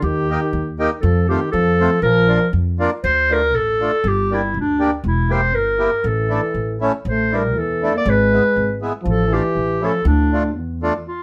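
Bouncy and festive, this brief excerpt from a longer alpine folk dance-band piece moves at 120 BPM in a straight 2/4, starting in B-flat major before turning to D minor at 3.0 s. A warm, classical-style clarinet carries the melody up front, its tone slightly distant and roomy. Beneath it, a mellow euphonium with light vibrato and a smooth top plays a second line, dropping out briefly and returning at 6.0 s. A reedy, full and dark accordion supplies the accompaniment with a smooth, dry-tuned sound, while a woody upright bass played pizzicato on steel strings anchors the low end near the front. The minor-key passage leans on suspended and dominant harmonies before settling on a D minor add9 chord at 10.1 s, all set in a moderate studio reverb.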